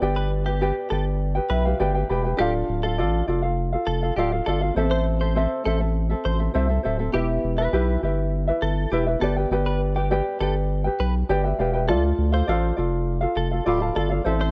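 Worn, warbling cassette tape colors this short pop passage, with warbly pitch drift, light reverb and a small room ambience around a tender, reflective mood at 101 BPM in 4/4, moving through G, Dm, Am and Em. A deep, thick, saturated sub bass and a mellow, thumb-plucked ukulele sit up front, while a clean, direct-recorded electric guitar picks compressed arpeggios through analog chorus from 0.2 seconds. A dark, woody, boxy upright piano stays in the background and adds short fills at 1.2 and 6.0 seconds.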